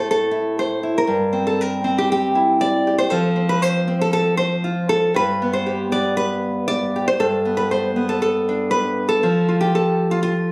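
A fingerpicked nylon-string guitar sits up front in this gentle, nostalgic folk excerpt at 118 BPM in 4/4, its warm classical tone moving straight through Am, C7/G, F5, G, Gadd9 and F over 10.5 seconds, caught on a phone in the room with light reverb and compression.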